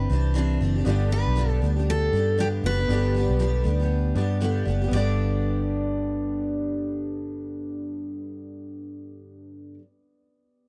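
Opening at once on a Cadd9 that settles onto G, this sunny, carefree acoustic pop excerpt at 118 BPM in 4/4 with a lightly swung sixteenth feel sets a bright, fresh-stringed dreadnought guitar melody up front over a double-tracked, full-bodied jumbo acoustic guitar accompaniment with audible finger squeak, a round, punchy foam-muted electric bass also up front, and a clear, smooth concert grand piano in the background that rings on by itself after the guitars and bass stop near 9.7 seconds until 10.7 seconds, all captured in a dry, close 1970s-style studio sound with a small room reverb.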